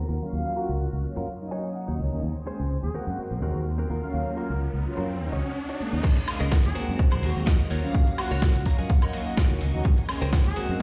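This filtered disco house cut sounds as if it is played through a big sound system in a bare stone room, with a light reverb hanging over it. At 126 BPM in a straight 4/4 groove in Eb dorian, it moves through funky, groovy chords such as Gbmaj7/Eb, Ebm7, Bbm9/Eb and Ab9, with sidechain pumping and low-pass filtering shaping the string machine, guitar, bass, synth brass and horns. A lush, vintage string machine holds sustained chords with ensemble chorus in the background. A punchy fingered electric bass sits up front, and a clean, direct-recorded electric guitar picks out a compressed riff with short fills. Mellow synth brass adds round, dark, detuned accompaniment treated with chorus and phaser, while a clear horn section with light vibrato and tape echo carries the melody. A filter sweep runs over the opening until an electronic riser leads into the drop at 6.0 seconds, where an overdriven, punchy electronic kick and a gritty, dusty sampler-style kit of hi-hat, snare, woodblock and crash cymbal come in with small room ambience.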